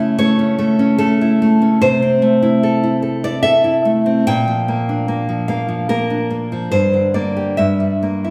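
In a rubato 3/4 at 73 BPM, a fingerpicked nylon-string guitar plays alone across this brief 8.3-second cut from a longer romantic classical piece, its intimate, melancholic mood shaped by a drift from A/C# through Am/C and Bb to Gm and Edim/G. The bright, fresh-stringed guitar sits up front and spans G2 to G5, yet it is heard from further back in a recital hall whose wet reverb lingers for about 1.6 seconds.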